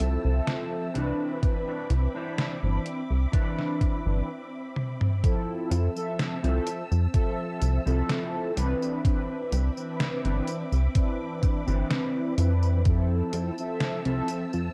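Dry and cassette-worn, this woozy, dreamy vaporwave fragment drifts between Fmaj7 and Cmaj9 chords. A glossy, up-front chorused synth bass with tube saturation anchors a round, brassy synth brass part treated with chorus and delay, while a silky string machine holds slow-attack chords and a clean, fingered electric guitar plays a dark riff. A detuned 8-bit drum machine with overdrive plays hi-hat, snare, tambourine and toms, joined at 1.4 seconds by a thumpy, overdriven electronic kick, and a brief break at 4.3 seconds ends in a drum fill before the second section begins at 5.2 seconds.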